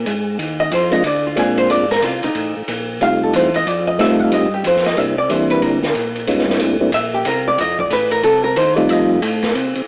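A smooth tonewheel organ bass line opens this greasy, swinging soul jazz organ trio fragment, and a distant, roomy big-band drum kit with a boomy kick and medium-tuned snare falls in at 0.1 seconds, carrying a cassette tape coloring. An up-front, dark and compressed archtop guitar joins at 0.6 seconds, featured in a clean, picked hollow-body jazz solo, while a soft, flute-like percussive organ with second harmonic percussion adds its mellow melody from 0.9 seconds, both organs turning through chorus vibrato and a slow rotary speaker. Moderate spring reverb and a lo-fi home cassette sound with a small-speaker character frame the groove over Bb9, F9 and C9 chords.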